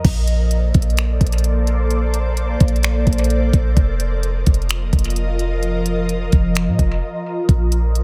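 An echo-heavy mix with little room reverb frames this blissful, dreamy excerpt of atmospheric cloud-rap, moving at a half-time feel from Bbmaj9 to F7sus4 and back. An ethereal, airy pad of detuned sawtooth and triangle voices holds sustained chords with slow attack and long release, shimmering through ensemble chorus, phaser, its own reverb and sidechain pumping. Up front sit a deep, boomy, sine-like 808-style bass and a smooth R&B electronic kit with knocking kick, silky hi-hats, finger snaps and crash cymbal, with a brief break arriving at 7.0 seconds.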